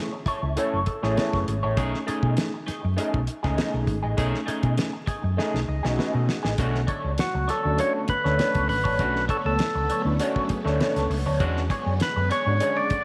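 A straight 4/4 funk groove at 100 BPM drives this sly excerpt, built on a damped 70s drum kit with a fat snare and tight kick sitting up front beside a round, hollow-body short-scale fingered bass, while a barky, gritty overdriven tine electric piano punches out stabs and fills over a slightly broken-up, compressed electric guitar through a small old amp with wah. At 6.6 seconds the harmony moves from F#m7 and B13 to Bm9, and a shimmering, phased string machine of violins slips in behind. At 7.2 seconds a full, lightly overdriven tonewheel organ with key click takes the melody, all of it wrapped in echo chamber reverb and vinyl crackle, and at 11.4 seconds the harmony shifts to E13.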